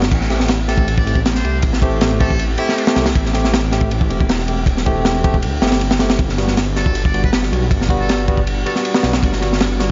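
Nostalgic yet frenetic, this drum and bass excerpt in A dorian runs at 158 BPM, with a crunchy, saturated breakbeat kit of tight kick, high-tuned snare and dark cymbals pushing up front over a thick, beating detuned saw bass, while a very quiet, silky string machine holds sustained chords moving from Am7 to Gmaj7 at 6.2 seconds, a barky tine electric piano fires dub-echoed stabs through a combo amp, and a distant, buzzy trumpet with metal mute sings a brief classical-style melody from 0.7 seconds, all under light reverb and vinyl crackle.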